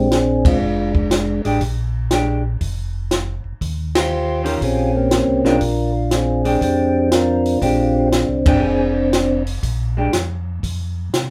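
Soulful and greasy, this brief cut from a longer soul jazz organ trio piece swings at 120 BPM in 4/4 over a Bb mixolydian groove, moving from Bb13 to Eb13 at 3.6 seconds and back to Bb13. A percussive tonewheel organ carries the melody through a slow rotary speaker, its round, clean tone sharpened by third harmonic percussion until it drops out at 9.4 seconds. Underneath, a second, mellower tonewheel organ handles the bass line, its chorus vibrato and slow rotary speaker giving the low end a soft, rolling body. A compact cocktail drum kit sits dry and up front with dark cymbals, a high-tuned snare and a punchy kick, while a vintage hollow-body electric guitar adds dark, clean, picked accompaniment from 1.4 seconds. The band hits accents together at 0.4, 3.9 and 8.4 seconds, and the whole group plays live in one room with moderate studio ambience that keeps the sound close and natural.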